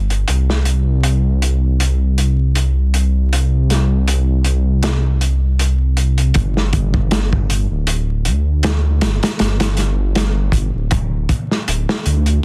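Melancholic and cinematic, this trip hop excerpt moves at 79 BPM in 4/4 with a light 16th-note swing, pairing a deep, rumbling detuned saw bass with tube saturation, spanning D1 to D2 from the very start, against a crunchy, gritty breakbeat kit of hi-hat, punchy kick and medium-tuned snare that enters at 0.1 seconds with a rolled-off top and filtered small-room sound, both up front in a dry, dense, heavily limited mix dusted with vinyl crackle.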